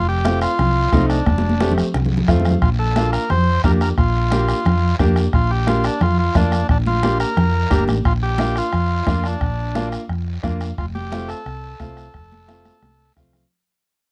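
A buzzy vintage combo organ carries the melody up front over a round, dark hollow-body electric bass from the opening moment of this sunny, festive cumbia at 177 BPM in Bb major, as a bright, woody upright piano, a soft-beaten bombo, raspy guiro and high-tuned, saturated congas sitting in the background join almost at once; a drum fill lands at 1.3 seconds, and the dry, close 1970s-style studio sound begins to fade out at 8.1 seconds as a cut from a longer piece.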